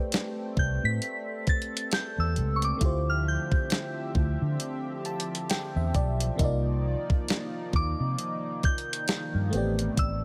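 A swung sixteenth-note groove from a crisp, thumpy 8-bit drum machine with a fat snare sits up front beside a dark, round, foam-muted fingered bass in this sensual, longing contemporary R&B excerpt, while a glassy FM electric piano with chorus and phaser adds a fill at 4.6 s, a shimmering pulse-width pad pumps beneath with sustained chords, and a soft synth bell carries a pure melody through tape echo over Am11, Dm11 and Cm11 harmony in a dry, close mix.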